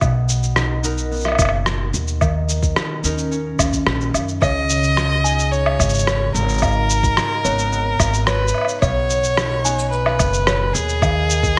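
Folktronica with a playful mood: ringing, fingerpicked concert harp arpeggios under a low-pass filter, a woody, thumpy pizzicato upright bass with tube saturation, a soft electronic kick drum and a muffled, up-front electronic woodblock, shaker and rim click open together, and at 4.4 seconds a smooth, bowed violin melody with vibrato enters alongside a delicate, tinkling music box line with digital delay set in the background, within a light reverb.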